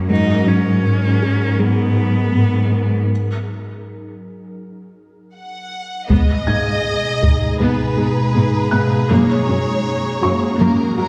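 At a steady 80 BPM in straight 4/4, this cut from a longer cinematic score blends orchestral and electronic sounds into a vast, relentless mood in G# minor. An ethereal, detuned pad holds sustained chords throughout, while a soft, round synth pluck runs arpeggios. A felt-muted upright piano sits dark and intimate in the background, with its action noise audible. A lush symphonic cello section anchors the low end, and a solo cello with tape echo sings an expressive, portamento-laden melody that stops at 3.1 s. The violin section brings a warm, vibrato melody in at 5.4 s, and a bowed viola section joins with smooth accompaniment as hard-stick taiko drums strike briefly from 6.1 s. A reverberant concert hall places the ensemble at a distance, giving the sound a spacious depth.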